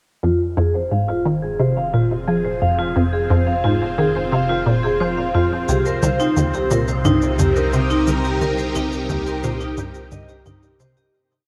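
Hypnotic and expansive, this short ambient space-music piece in F minor moves at 88 BPM in a straight 4/4, drifting from Fm to Cm7 inside a huge reverb. A juicy, squelchy blip pluck repeats an 8-step sequence up front, while a dark, metallic vibraphone struck with hard mallets loops a 5-step arpeggio that drifts against the bar under a filter sweep and delay, and a swirling, vintage string machine fades in with phased, chorused chords. A mellow, bubbling filter texture holds a high C5 in the background, electronic toms and cabasa add a light, dry machine pulse from 5.7 seconds, and the whole piece fades out from 7.5 seconds.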